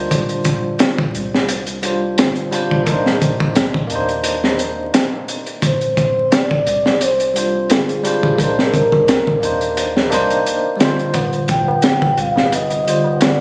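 Crunchy, gritty breakbeat drums sit up front with a punchy kick and high-tuned snare, driving a hypnotic, smoky trip hop groove at 87 BPM in C minor with a light 16th-note swing. A bell-like tine electric piano with tremolo and tape echo alternates between G7sus4 and Cm9 over a soft, round 808-style bass, and a pure, breathy sine lead with subtle chorus, vibrato and portamento glides in at 5.7 seconds. A low-tuned, ringing tabla joins in the background at 11.1 seconds, all heard through a phone-in-the-room recording with studio reverb and vinyl crackle.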